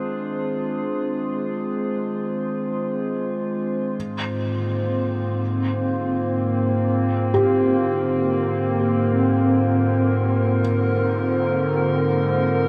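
A vast, wet reverb with a seven-second tail bathes this serene, luminous ambient fragment, cut from a longer piece and floating in free time. Up front, a warbly, tape-like pad fades in with sustained chords, its nostalgic lo-fi tone shaped by chorus and shimmer reverb, moving from Ab6 to Bbadd9/Ab at 4.0 seconds. Alongside it, a close-miked glass harmonica fades in as a glassy, ethereal texture with slow attacks and gentle beating, lifted by its own shimmer. At 7.3 seconds a felt-muted upright piano enters with soft, dark, intimate arpeggios on G4, trailing a diffuse ambient delay and shimmer. The pad's mellow glow carries the harmony while the harmonica's pure tone and the piano's vintage hush add quiet detail.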